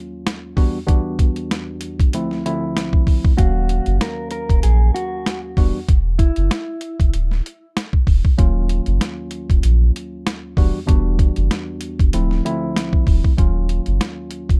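Gritty, pitched-down sampler drums with a thumpy kick and high-tuned snare sit up front in this dark, tough boom-bap hip-hop fragment at 96 BPM with a light swing, entering at 0.3 seconds over a worn, slightly out-of-tune tine electric piano softened by cassette-tape character, before a round, deep dub sub bass joins at 3.4 seconds and a clean, fingered electric guitar adds a spring-reverbed, delayed melody that runs until 8.3 seconds, all over mostly minor-seventh chords in a dry, dark, warm mix.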